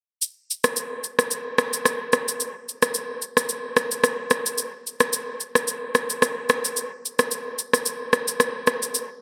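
An up-front electronic shaker and rim click, dressed in gated reverb, carry this smooth, hypnotic afrobeats fragment with a lightly swung sixteenth-note feel from 0.2 to 9.1 seconds, set in a moderate plate reverb with bright 1980s-style digital production.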